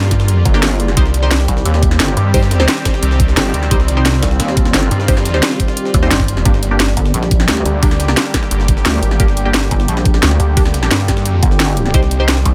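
A snarling, distorted sawtooth bass growls up front through this tense, dark slice of technical drum and bass, its detuned unison tone thickened by tube saturation and a moving notch. Alongside it sits a pulsing pluck wobble bass with a heavy, saturated sine weight and a touch of chorus, entering at 0.5 seconds. An overdriven electronic kick with a knocking attack and a layered drum and bass kit of cracking snare and bright hats drive the straight groove from the front, both re-recorded in a small room. A very quiet, gritty jungle sampler-style kit with a high-tuned, pitched-up snare rides far behind in a larger room. In the background, a sweeping resonant pad with a filter swell and a blurred, granular cloud pad with its own reverb both pump against the sidechain, while a muted, deep dub chord stab passes through phaser and digital delay. The harmony moves between G minor and C minor, with a return to G minor at 6.5 seconds, and the mix stays dry and close.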